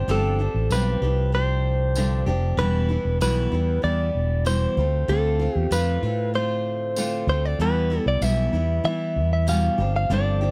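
A growly, punchy fretless electric bass sits up front in this sunny, carefree acoustic pop clip, its amped tone carrying the low end in a straight 4/4 feel. Over it, a clean electric guitar recorded direct takes the melody, its picked, compressed sound also placed up front. A picked steel-string acoustic guitar fills in the accompaniment with an auditorium-style body, and its finger squeaks can be heard. A jingly tambourine sounds distant in a large room, entering at 0.7 seconds and dropping out at 9.6 seconds. The harmony moves through G7sus4, Em, Dm7 and Em before returning to G7sus4, all captured in a dry, close 1970s-style studio recording cut from a longer piece.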